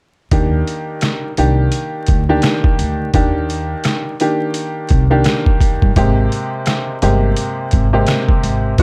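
From 0.3 seconds, a worn, slightly detuned upright piano with cassette-tape colour, a woody pizzicato upright bass and a gritty, pitched-down sampler-style kit (thumpy kick, medium-tuned snare, rim click, hi-hat) set a warm, confident boom-bap hip-hop groove at 85 BPM with swung 16ths in Eb major, moving from Ebmaj7 to Abmaj9 at 6.0 seconds in a dark, dry mix dusted with vinyl crackle.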